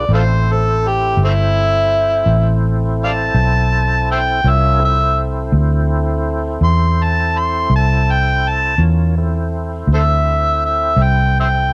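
An overdriven, gritty harmonica leads this mournful, brooding slow blues in A minor, playing a jazz-style solo through the first 8.8 seconds with tongue slaps, scooped notes and light vibrato, up front over a 12/8 pulse at 55 BPM. Beneath it, a foam-muted electric bass sits round, dark and punchy, while a fat tonewheel organ holds sustained chords with key click, chorus vibrato and a slow rotary speaker. Moderate spring reverb and studio ambience frame this short cut from a longer piece, which moves into a new section at 8.8 seconds.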